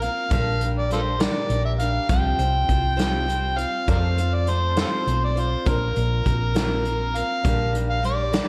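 A big, arena-scale sound with moderate hall reverb and a touch of small-room ambience frames this short folk rock and heartland rock excerpt, which is reflective and wistful at 67 BPM in a straight 6/8. An overdriven harmonica carries the melody up front, gritty and amplified, with light vibrato, tongue slaps and a slapback echo. Beneath it, a bright picked steel-string acoustic guitar with finger squeak and its own slapback echo supplies accompaniment, while a round, punchy hollow-body short-scale electric bass sits close and dark. A soft brush kit with a medium-tuned snare, punchy kick and hi-hat sounds distant and roomy. The chords move from Gm/Bb through Csus4 to F. At 3.9 s, on that F, a very quiet upright piano, woody and mellow with short sustain, joins before the harmony passes to Bbadd9 and back to Gm/Bb.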